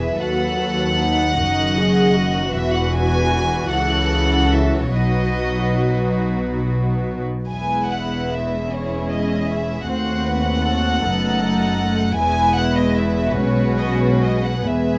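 A close, dry, intimately detailed recording captures a tender, serene slow romantic movement for string orchestra in E major, its rubato 6/8 moving at roughly 44-53 BPM, with a dark, up-front chamber violin section carrying the melody over a warm second violin line, a woody, lush viola accompaniment, and a bass of pure, floating, distant cellos and dark chamber double basses, all bowed sul tasto through this 15-second excerpt cut from a longer piece.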